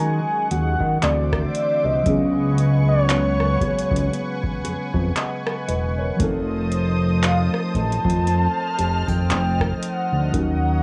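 A booming analog drum machine sets a slow 58 BPM pulse in 4/4 with a swung sixteenth-note feel, coming in at 0.5 s with deep kick, metallic hi-hat, handclaps and rim click, all carrying a gritty vintage 12-bit sampler texture and sitting up front as if re-recorded in a small room. This contemporary R&B excerpt has a longing, moody character, with the harmony moving from Ebm11 through D9 to a long Db7sus4 before settling on F7 at 6.2 s. Up front beneath it, a fat analog bass made from detuned, saturated sawtooth tones holds thick, sustained low notes. A mellow, horn-like synth lead carries the melody with a round, soft-attack tone shaped by wave-folding, a filter sweep, vibrato, chorus and slapback echo. Muted, felt-like synth keys add dark, intimate chorused accompaniment, while a lush, warbling unison pad holds detuned vintage chords that pump with sidechain. A small, very quiet nylon-string guitar plays thumb-plucked arpeggios with audible finger squeak, all wrapped in a digital small-room ambience.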